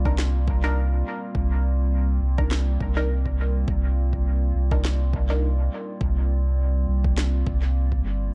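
A warbling, nostalgic pad with chorus and built-in reverb sustains a C7sus2 chord over a round, up-front sub bass to open this hazy, meditative ambient dub excerpt at 103 BPM with swung 16ths, as a muted, detuned sawtooth chord stab with phaser and dub echo plays until 5.5 s, an overdriven deep kick sits in the background, and a woody electronic snare carries dub echo through an echo-heavy, otherwise dry mix.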